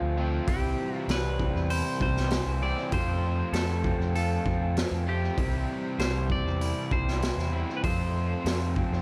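An overdriven picked electric bass stands out most: dark, round and punchy, it plays low notes between C2 and F2 from the very start. The piece is an upbeat yet wistful indie rock excerpt at 98 BPM in 4/4 with a straight feel, in C major and tuned to A4 = 438 Hz. Two riffing electric guitars fill the middle: a bright, crunchy overdriven guitar bathed in lush chorus and tape echo, and a raw, lo-fi garage guitar with overdrive and tape echo of its own. At 0.5 seconds a clean, picked electric guitar enters with a melody between G4 and D5, also carrying tape echo. The acoustic garage drum kit joins at the same point, gritty and saturated, sitting up front in a small room with a kick, a medium-tuned snare and hi-hat, its top rolled off. The harmony moves between C and F, and light reverb sits over an echo-heavy mix.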